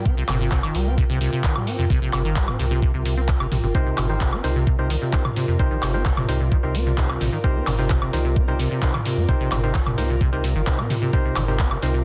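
A rubbery, resonant acid bass riff with tube saturation, lush chorus and analog delay drives this trippy, hypnotic acid house excerpt at 130 BPM in C minor, over a round sine sub bass that pumps with the sidechain. A thumpy, up-front kick and a tape-coloured analog drum machine with metallic hats, handclaps, toms and woodblock carry the straight 4/4 groove, while an airy, breathy pad with ring modulation and chorus also pumps with the sidechain. From 3.7 seconds a hollow, organ-like stab adds chorused, delayed hits over a Cm7 chord, with light digital ambience and a dense, heavily limited master.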